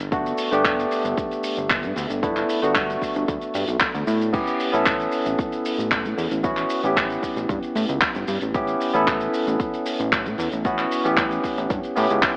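Nu-disco at 114 BPM in A mixolydian, groovy and sunny, this short cut from a longer piece moves from Gmaj9 to A9 at 4.3 seconds. A bright, barky tine electric piano sits up front with overdrive, subtle chorus and slapback echo, over a fat, detuned analog bass mixing sawtooth, square and triangle tones with ring modulation and a filter sweep. A damped, dry 70s drum kit with dark cymbals, handclaps, hi-hat and shaker is layered with a punchy electronic kick, and the whole mix carries an AM radio character.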